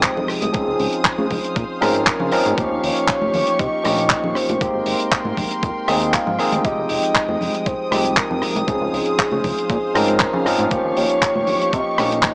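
Sensual and cosmic, this nu-disco excerpt moves at 118 BPM in a straight 4/4, cycling through lush ninth chords from Fm9 to Dbmaj9, Eb9 and Abmaj9 under a soft, round octave-layered synth lead with chorus, tremolo and vibrato. A bright, lightly overdriven tine electric piano sits up front with sidechain pumping, joined by a glossy chorused synth bass with a filter pluck and tube saturation, and distant, reedy studio strings carrying grainy 12-bit sampler grit and their own pumping. A dry, damped 70s drum kit with handclaps, hi-hat and rim click drives the groove alongside a thumpy electronic kick, while ringing high-tuned congas enter at 0.2 seconds in the background, all in a small room with light reverb and a small-speaker sound.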